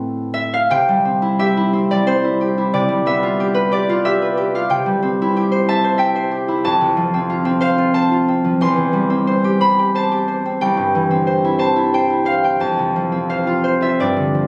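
A lone concert harp opens this wistful, mysterious excerpt of a classical solo piece in C major, ringing and up front across a span from C2 to C6 as it moves in a rubato 3/4 at around 91 BPM with uneven beats, its fingerpicked, acoustic tone drifting through chords such as C, G7/C, F and C/E under a light club reverb captured on a phone in the room.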